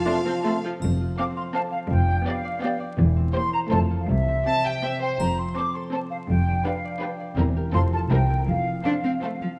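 A playful, whimsical cinematic film cue in triple metre, this short cut from a longer piece opens with brief entries from clarinet, oboe, bassoon and sustained horn-section chords that fall away by 0.6 seconds, leaving an up-front flute section with pure, tongued vibrato over a ringing, fingerpicked concert harp playing arpeggios. A distant, soft-attacked violin section carries the melody, supported by a second violin section in the background, a focused viola section and, from 0.8 seconds, a cello section with expressive portamento and a double bass section anchoring the low end, while a close triangle adds light touches. The orchestra sits in a moderate scoring-stage reverb captured with close, detailed microphones, with a vinyl crackle lending a quirky, old-time charm.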